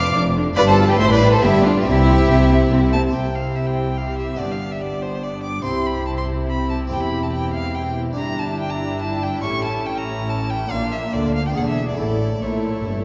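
Lively and festive, this 13-second cut from a baroque-style concerto movement in C major moves at 142 BPM in 3/4, with a smooth solo violin and a background violin section sharing the melody, a focused second violin section on the second line, even violas and an airy Italian-style harpsichord filling in the accompaniment, and expressive double basses together with warm cellos anchoring the bass, all heard from further back in a wet concert hall as the harmony turns from C toward Gm69, A7 and Bb before landing on A.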